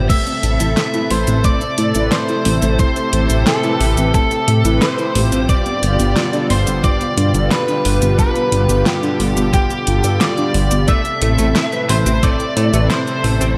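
Nocturnal and cinematic, this synthwave passage, cut from a longer piece, moves in a straight 4/4 over a brief A minor to G7 and back progression, set in a lush hall reverb that gives it a big arena sound. An overdriven lead guitar through a small cranked amp carries the melody, with digital delay and slapback echo trailing its picked notes. Beneath it, a bold, detuned analog pad holds brassy sustained chords with chorus and sidechain pumping. Darker, vibrato-tinged synth brass stabs sit in the background, alongside a pure FM bell line and soft, round pluck arpeggios given a cassette-tape tint until 10.9 seconds. A glossy pulse-wave synth bass pumps up front with a thumpy sampler-style electronic kick, while a layered pop drum kit adds a fat snare, metallic hi-hats, shaker and crash cymbal. At 10.9 seconds a twangy, compressed clean electric guitar slips in with a quiet ensemble-chorused riff, and the kick drops out at 12.4 seconds.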